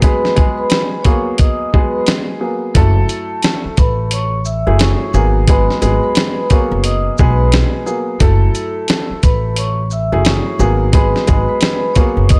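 Reflective and dark, this swung boom-bap hip-hop excerpt at 88 BPM in F# dorian pairs a ringing, airy soft-mallet vibraphone melody with slow motor vibrato and digital delay over woody, tape-tinged upright piano chords moving between G#m9 and F#m9. A gritty, compressed sampler-style kit sits up front with its thumpy kick, fat snare, hi-hat and shaker, and a warm pizzicato upright bass joins at 2.8 seconds, all in small room ambience.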